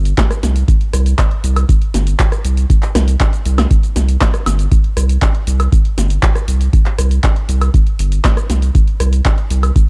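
Acid house at 119 BPM in a straight 4/4, trippy and hypnotic, tuned slightly sharp to A4 = 441 Hz and cut from a longer piece. A round, dark analog bass sits up front between G1 and C2, its sustained, fast-attack sine-and-triangle tone thickened by tube saturation and pumping against the sidechain. A deep, tape-warm electronic kick drives the groove alongside a punchy analog drum machine of handclaps, hi-hat, rim click, shaker, snare and woodblock, with a short room on the snare, clap and hats, all in a mostly dry mix.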